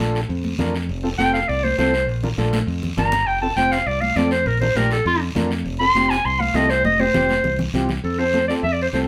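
Recorded as a band playing live in one room with a moderate studio ambience, this festive, danceable cumbia fragment opens on a vintage, mellow combo organ with light vibrato and overdrive, a warm, up-front fingered electric bass, high-tuned congas struck with hard hands in the background, and a raspy, close guiro. At 1.2 seconds a bright, present clarinet enters in a classical style, carrying the solo melody up front over the groove. The chords move between Bb and F, touching Fadd9 and Fsus2 before settling on F at 8.0 seconds.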